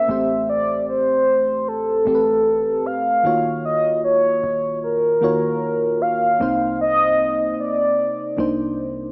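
A horn-like, warbling synth lead with vintage detuned character, chorus, digital delay and vibrato sings the melody up front from the first moment over a soft, round FM electric piano with chorus, joined at 0.1 seconds by a deep, boomy 808-style bass sitting in the background, in this moody, longing contemporary R&B fragment at a slow 76 BPM with a lightly swung 16th-note feel, moving through Am9, Ebm9 and Cm9 inside light reverb and a small-speaker sound.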